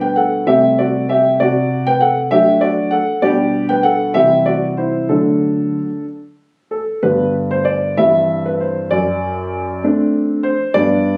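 A smooth, vintage-toned grand piano opens this cheerful, graceful classical-period sonatina, playing alone and sitting up front in the mix from the first moment to its close at 11.2 s. The pulse moves at 64 beats per minute in dotted quarters, in 6/8 shaped with a rubato feel, and the instrument is tuned to A4 = 438 Hz. The playing spans from F#2 up to G5, and the harmony moves through Am7/C, D7/C, G/B, C and D in the opening passage. A second passage begins at 7.0 s on G, passing through C/G and D7/F#. The sound carries the character of a phone recording in the room, with light club reverb and compression around the piano's warm tone, and the music is cut from a longer piece.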